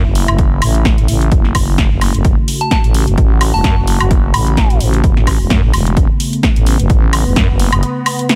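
A swung 4/4 groove at 129 BPM drives this gritty, swaggering bass house passage in F# minor, cut from a longer piece and resting on a single F#m chord. A punchy, tape-warm electronic kick and a layered house kit of punchy snare, warm hi-hats and woodblock sit in a dry studio ambience, with the kick entering at 0.4 seconds. Up front, a thick, growling FM bass with tube saturation pumps against the kick from the low register, dropping out at 7.8 seconds for a brief break. Beneath it, a detuned sawtooth pad holds evolving, resonant chords roughened by chorus and vintage 12-bit sampler grit, pumping in time with the beat. Around 2.6 seconds, a soft, pure FM bell adds a short, high melody, decaying through chorus, phaser and dub echo.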